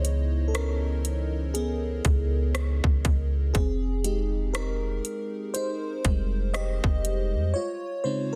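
Contemporary R&B with a late-night, moody feel, this short excerpt moves at a slow 60 BPM in 4/4 with a swung sixteenth-note lilt. An FM electric piano layered with a soft pad carries the lead, its lush, dreamy tone touched with chorus and a noise layer as it moves through Dbm9, Fm9 and a rootless Bbm9. Beneath it, a soft 808-style bass sits deep and round, its sine-like notes striking quickly and then decaying. A trap drum kit supplies metallic hi-hats, a hard-clipped kick and rim clicks, with soft clipping on the snare. The bass drops out at 7.5 seconds and the drums at 7.3, leaving the electric piano alone until 8.4 seconds. The mix places these parts up front in digital ambience, with a dense, heavily limited modern master.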